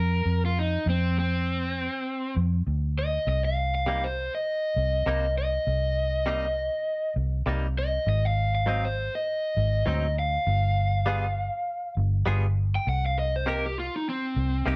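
A light reverb gives this short cut from a longer piece a smoky sound, with each part sitting up front. It is a straight-eighth soul blues in C minor at 100 BPM in 4/4, with a gentle 16th-note swing and a soulful mood. A raw garage guitar, overdriven and picked with a warm edge, carries the melody as a solo from the first second to the end, ranging from C4 to G5. Beneath it, a vintage electric bass, fingered and foam-muted, gives a dark, round tone between G1 and F2. At 3.9 seconds a direct-recorded clean guitar enters with bright, twangy, compressed stabs, its scooped tone lightly touched by chorus. The harmony opens on an F5 before settling into Cm7, then moves through Ab7 and a tense G7b9 at 10.5 seconds before returning to Cm7.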